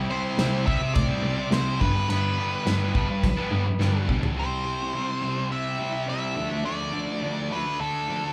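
A bright, double-tracked fuzz guitar riff and an intimate, airy-bowed cello bass line open this brooding quiet-loud alternative rock passage at 105 BPM, joined by a nasal, overdriven lead guitar melody through a parked wah and a loose, pumping indie drum kit whose fill ends at 4.4 seconds, when the cello and drums drop away and a dark, slightly broken-up electric guitar through a small old amp takes up soft fingered arpeggios in spring reverb, all captured as a band playing live in one room with light reverb.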